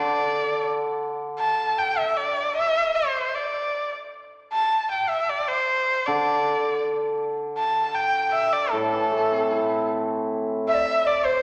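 A bowed erhu sings a tender, wistful melody up front, its focused, boxy tone shaded with vibrato and portamento, while a bright hammered dulcimer rings out beneath it before falling away at 2.2 seconds. The shimmering dulcimer returns at 6.1 seconds to carry the accompaniment through this freely paced Chinese traditional chamber excerpt in 2/4, all set in a lush concert hall reverb. At 10.7 seconds a mellow large dizi adds a brief, pure second line with a buzzing bamboo edge just before the fragment cuts off.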